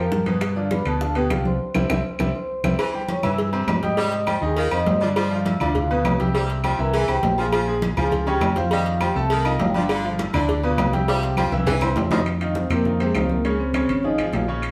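A straight, danceable salsa groove in 4/4 drives this passionate Latin excerpt, built from tight, high-tuned bongos and cowbell, ringing congas, metal-shell timbales and agogo bells, and woody claves beneath a round, punchy fingered electric bass up front and a brilliant baby grand piano with audible action noise. A mellow vibraphone played with soft mallets carries the melody, its slow motor vibrato trailed by tape echo, while a bright, tight saxophone section adds a second line from 2.8 to 12.2 seconds. A band accent and drum fill lead into that middle stretch, the bongos and cowbell drop out at 12.1 seconds, and the mix sits a little back in a wet studio reverb.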